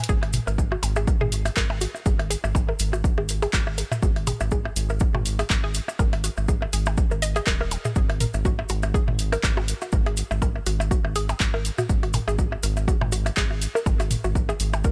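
A hollow, bouncy square-wave pluck riff opens this sparse, quirky minimal techno excerpt alongside a punchy analog drum machine of handclaps and hi-hat, the pluck coloured by chorus, phaser, tape echo and sidechain pumping. At 122 BPM in 4/4 with a light 16th-note swing, an up-front electronic kick and a deep, round, dark analog bass with ring-modulated edges and its own sidechain pumping anchor the groove, while grainy, mellow maracas and overdriven electronic blips and toms with delay add texture. The mix is dry and close, with the kick and bass sitting furthest forward.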